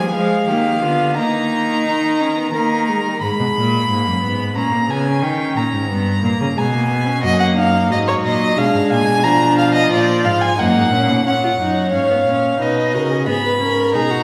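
At the start, a string quartet opens this baroque-style fugue in G# minor, moving at a stately, joyful 89 BPM in 3/4. The first violin carries the melody with a smooth, even tone, sung out with vibrato and placed up front. Beneath it, the rich cello anchors the bass with light vibrato, while the viola adds a warm, expressive accompaniment with vibrato and portamento, sounding more distant. The second violin's close, even line drops away at 3.2 seconds and rejoins at 7.2 seconds. After a passage through diminished and dominant-seventh colours, the opening material returns at 11.3 seconds, settling on a G# minor chord with an added ninth. The quartet is heard from further back in a reverberant scoring stage, and the excerpt is cut from a longer piece.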